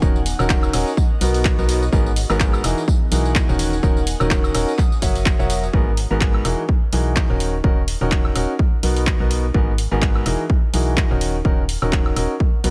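Energetic yet bittersweet, this piano house cut moves at 126 BPM in 4/4 with a light swing on the sixteenths, cycling through lush seventh and ninth chords such as D#m7, Bmaj7, G#m9 and Emaj9#11. A clear, woody upright piano sits up front playing the riff across the whole clip, treated with tape echo and sidechain pumping. Underneath, an organ-like FM bass gives hollow, percussive low notes with a fast attack and dark decay, also pumping against the beat. The punchy electronic kick drum is layered and overdriven, re-recorded in a large room, while an analog drum machine captured in a small room supplies handclaps, hi-hat, tambourine and woodblock. An airy, breathy pad with chorus and phaser hovers in the background during the drop until 5.7 seconds, and the whole mix sits in a digital ambience.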